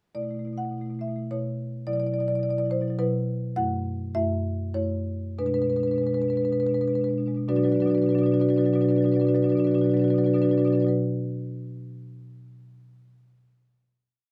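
In a rubato triple metre that slows from 2.7 to 7.5 seconds before settling on a closing B minor chord, this brief, hypnotic contemporary classical piece for solo marimba with medium mallets moves between a flowing single-line melody and hymn-like chordal writing, its woody, full rosewood tone close-miked and up front in a light reverb.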